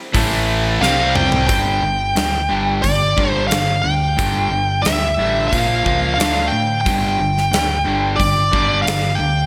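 This hard rock excerpt opens at 0.1 seconds with the band at a steady 90 BPM in 4/4, its mood powerful and anthemic, moving through A5 and C5 chords before settling on a G5, Bb5, D5 and G5 progression. A double-tracked, high-gain guitar with a bright, distorted edge sits in the background on the riff, dropping out at 1.5 seconds. Its companions carry on: a bright overdriven electric guitar in the background and a hollow-body semi-hollow guitar with a warm, overdriven tone, both picking the riff, alongside a punchy, amped fingered bass. Up front, a gated 1980s drum kit with a punchy kick, medium-tuned snare, hi-hat and toms rings out in a bright stone room with gated reverb, and a drum fill arrives at 0.8 seconds. At that same moment a smooth overdriven lead guitar enters high in the mix, singing its melody up front with a warm glow. The bright 1980s-style digital production is dressed in a moderate, lush hall reverb.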